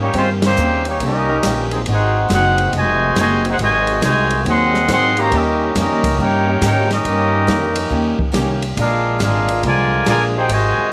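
A dark, soft-edged, vintage trumpet section carries the melody up front in this joyful big band swing excerpt, with a bright trombone section playing a second line behind it, a woody, growly upright bass, and a band accent landing at 0.4 seconds. A very quiet, boxy parlour guitar picks the accompaniment while an airy, polished drum kit with dark cymbals and a boomy kick keeps the swing, and from 1.3 seconds a second trombone section adds sustained chords with vibrato over Eb7, Ab7 and Bb7. A small room and light reverb surround the ensemble.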